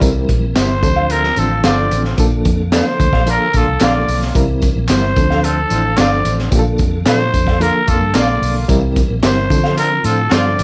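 Uptempo 1960s-style soul with a warm, uplifting mood, built on a reedy, slightly out-of-tune electric piano with fast tremolo, a very quiet tonewheel organ with fast rotary swirl, a round, foam-muted electric bass, a crunchy, saturated breakbeat kit with a high-tuned snare and tight kick, and compressed tambourine and handclaps. A growling, raspy trumpet takes the melody up front from 0.6 s. At the same moment a lo-fi guitar through a small old amp adds chorused, delayed stabs in the background, and a distant horn section plays a second line from 1.1 s. The chords cycle through C7, Dm7 and Bbmaj7 in a dry mix dusted with vinyl crackle, and the clip is cut from a longer piece.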